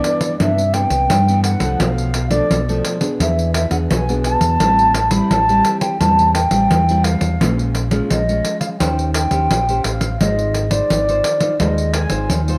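A jingly, compressed pandeiro sits up front with a saturated edge and hard-handed attack, driving this festive, sunny blend of samba and choro at 86 BPM in a straight 4/4. A dark, round fingered electric bass joins at 0.4 s, deep and dub-like with a direct, amped tone that sits just as close as the percussion. Over them, a mellow baroque flute carries the melody in an airy, woody voice, tongued and expressive with vibrato, heard from a distance through a cassette-tape coloring. A nylon-string guitar, fingerpicked in a classical manner, supplies accompaniment with the warm sound of old strings and the same tape texture. The harmony moves from Cmaj9 through Bm7b5, E7 and Am7 before shifting to Bbm7, Eb6 and Ab6, all within a single section cut from a longer piece. Moderate spring reverb and the homespun cassette recording give the whole a lived-in, intimate glow.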